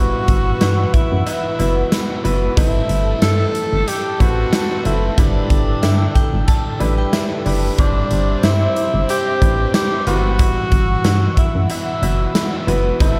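A breathy tenor saxophone leads this uplifting, romantic 1980s-style pop passage, carrying the melody with light vibrato, scooped notes and a subtone edge, trailed by a diffuse ambient delay. Beneath it, a solid FM bass sits up front with a round, punchy, dark tone, while an intimate concert grand piano with audible action noise and long sustain fills out the harmony. A bright, overdriven electric guitar with lush chorus and a smooth, detuned sawtooth pad stay in the background, adding a glossy shimmer. A big rock drum kit with a punchy kick and medium-tuned snare, plus hi-hat and tambourine, joins at 0.3 seconds with a gently swung sixteenth-note feel, and a very quiet metallic cowbell follows at 0.6 seconds. Between 5.8 and 7.6 seconds a crystalline FM synth bell adds a brief second line, and the whole dreamy mix is soaked in plate reverb, drifting through sus2 and add9 colours over a held G.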